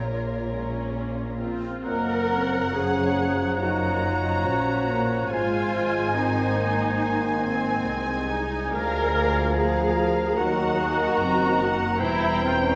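Played with rubato in 4/4 at roughly 63-75 BPM, this melancholic, yearning classical excerpt opens on B-flat minor and moves through G-flat major seventh, A-flat and E-flat minor harmonies. Muted violins carry the veiled, con sordino melody with vibrato, while a second, very quiet violin section adds a soft-edged line beneath it. A hollow, airy concert flute sits in the background, over dark, lush violas and a bass of close cellos and distant double basses. At 1.8 seconds a warm, vintage-toned oboe and a mellow French horn section holding sustained chords join in. At 1.9 seconds a bright clarinet and a smooth-topped bassoon follow, both in the background. The whole ensemble is bathed in the wet reverb of a recital hall.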